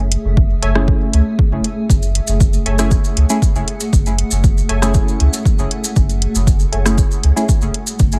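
An overdriven, punchy electronic kick drum sits up front over a round sub bass in this meditative, cavernous dub techno excerpt, with a blurred granular cloud pad holding an F#m9 chord, deep chorused stabs and a muted filtered stab carrying dub echo, metallic hats and rim clicks from a vintage rhythm box, and grainy maracas entering at 1.9 seconds.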